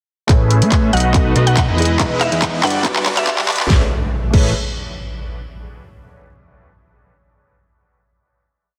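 Huge, lush supersaw chords lead this short, euphoric and playful future bass piece. Their bright, detuned stack is roughened by 12-bit sampler grit, pumped by sidechain, treated with dub echo and swept through a low-pass filter as they play a dotted-rhythm riff in open voicing. Underneath, a fat analog bass, thick and saturated with a wave-folded edge, follows the chord rhythm in a half-time feel. A punchy, layered electronic kick and a pop kit with snare, claps, closed hats with rolls and crash cymbal drive a drum fill through the build. A soft, felt-muted upright piano sits in the background with held, spread chords and syncopated pushes, and from 0.9 to 3.3 seconds a woody, round mallet-like synth pluck with chorus and tape echo adds short phrases. The harmony moves from Amaj9 through B7, Emaj7 and Gmaj7, and a very quiet riser and impact usher in the return to Amaj9 at 3.7 seconds for the final chord, all set in a moderate digital room within a dense, heavily limited modern master.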